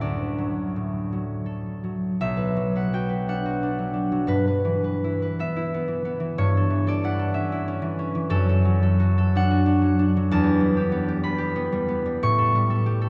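A bright, ringing concert harp, fingerpicked and up front, carries this graceful, peaceful classical solo in D major, moving in a rubato 6/8 at 53-65 BPM from D through Bm, Em/G, A7/G, D/F#, Em and A7, its range spanning B1 to C#6 inside a wet cathedral reverb of 4.7 seconds and a dark, warm production, in a short excerpt cut from a longer piece.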